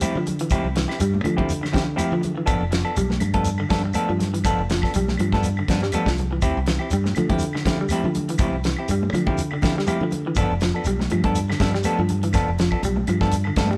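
Afrobeat with a hypnotic, driving pull, cut from a longer piece, where a dry, up-front 70s drum kit with a fat snare and tight kick sits beside a round, dark fingered electric bass entering at 0.2 seconds, clean semi-hollow guitar stabs, twangy, slightly broken-up guitar arpeggios bathed in spring reverb, and background claves, high-tuned ringing congas and a grainy shekere, all played live in one room over Dm11 and G9 chords before a drum fill at 13.6 seconds.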